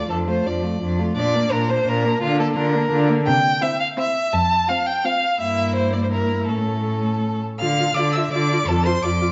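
Vinyl crackle and a reverberant recital hall frame this muffled clip from a quick, cheerful and graceful classical-period string quartet movement in D minor at 170 BPM in 3/4, where a distant first violin sings the melody with smooth, even vibrato, a rich second violin sits up front on a companion line, a dark viola adds soft-attacked, expressive accompaniment with portamento, and a clear, focused cello anchors the bass close and forward.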